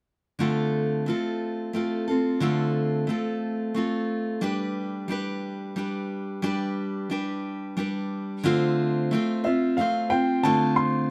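Intimate and wistful, this short acoustic folk excerpt sways at 90 BPM in 3/4 as a bright, picked steel-string acoustic guitar sits up front from 0.4 seconds, moving through Dm7 and G chords, before an upright piano with a woody tone and long sustain enters at 9.4 seconds to carry a high melody, all captured by close, detailed microphones with light reverb.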